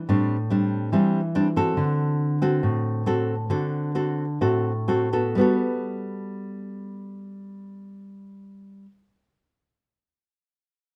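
A relaxed, breezy bossa nova moment, cut from a longer piece, played entirely by a lone nylon-string guitar. The fingerpicked guitar sits up front with an acoustic, classical character, and a touch of finger squeak on the strings adds intimacy. It moves from Am7 to D7, slowing down between 1.8 and 5.4 seconds, before settling onto a Gmaj9 chord at 5.4 seconds. Moderate studio reverb gives the playing a gentle sense of space within a dark, warm production. The guitar rings out until 8.9 seconds, closing the brief passage on that lingering chord.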